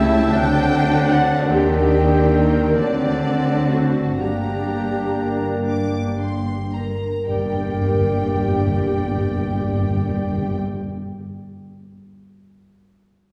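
Heard from further back in a reverberant concert hall, this brief classical passage in a rubato 6/8 carries a solemn, elegiac weight, slowing noticeably over its first 7.3 seconds under a D7, Ebmaj7, D7, Gm progression. A lush, vibrato-rich violin section sings the high melody, while a second, very quiet violin line joins a pure, tongued flute section, a solo oboe with a soft attack, and a bright, vintage-toned solo clarinet in weaving second lines. Beneath them, an intense viola section and a mellow, punchy solo bassoon accompany, a distant French horn section holds sustained chords, and a tight trumpet section adds roomy stabs. A focused cello section and an expressive double bass section anchor the bass, and a ringing, thumb-plucked concert harp spreads arpeggios across a broad span, lingering until 11.2 seconds after the other parts stop at 10.6. At 7.3 seconds, articulate timpani struck with hard mallets on calf heads enter, close, dry and up front, giving the closing bars a stern edge.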